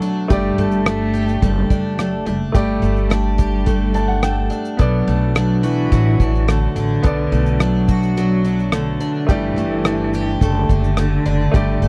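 This reflective, wistful acoustic pop excerpt opens with a full small ensemble: a cloth-damped, thuddy drum kit up front with a tight kick, rim clicks and shaker under a rolled-off top, beside a shimmering, octave-doubled twelve-string guitar and a polished baby grand piano. A single bowed cello carries a dark, distant second line with vibrato, and a pizzicato upright bass with a woody, steel-string tone joins near the front at 0.3 seconds. The picked parlour guitar has a boxy body and an audible finger squeak, while the clear piano slips into a short fill at 3.7 seconds. The harmony moves between Gsus2 and Bm7 at a relaxed, straight walking pace. The dry, close sound recalls a 1970s studio, with little reverb and an intimate, unhurried feel.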